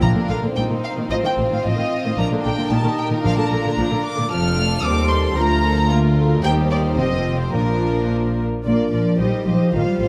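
A quick, graceful and cheerful classical-period orchestral movement in Bb major at 112 BPM in 2/4, where a clear violin section sings the melody over a dark second violin line, warm violas and sul tasto cellos and double basses in the bass, while very quiet soft-mallet timpani sound at 0.0, 3.2 and 7.5 seconds and a French horn section with light vibrato adds sustained chords from 8.7 seconds, all set in a moderate scoring-stage reverb.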